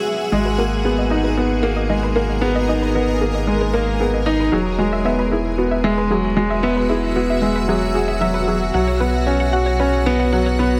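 A dark, mellow grand piano with audible action noise and tape echo carries an intimate, hypnotic riff up front in this 114 BPM G# minor piano and strings electronica piece, cut from a longer work, over a cloudy granular pad, with a round sub bass up front and a warbling, lo-fi pluck arpeggiating in the background, both entering at 0.3 seconds, through chords of G#madd9, Eadd9 and Bsus2 in a moderate concert hall reverb.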